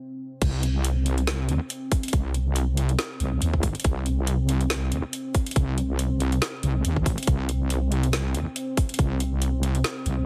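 A deep, dark ambient pad with chorus, built-in reverb and gritty 12-bit sampler texture opens this cavernous, meditative deep dubstep excerpt in C minor at 140 BPM with a swung half-time feel, before a drop at 0.4 seconds brings in a saturated, detuned wobbling sawtooth bass with chorus between G1 and Eb2, a tight, up-front electronic kick that stops at 9.1 seconds, and a filtered garage kit with a woody snare, metallic hi-hats and crash cymbal, all under a heavily compressed, radio-like sound.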